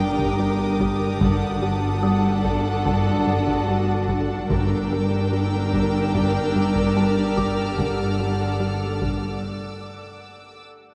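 A straight 4/4 pulse from a hard-stick taiko ensemble and a punchy, funky analog bass riff anchors this ominous, eerie suspense film cue, where an intimate chamber violin section carries a sul tasto melody with vibrato over a dark second violin line, woody violas, a pure cello section, a distant double bass section and roomy French horn chords, while a cloudy granular pad, a tinkling, slightly out-of-tune music box and a floating high violin texture hover in a wet concert-hall reverb until a break at 9.4 seconds, where only those high violins linger to 10.6 seconds.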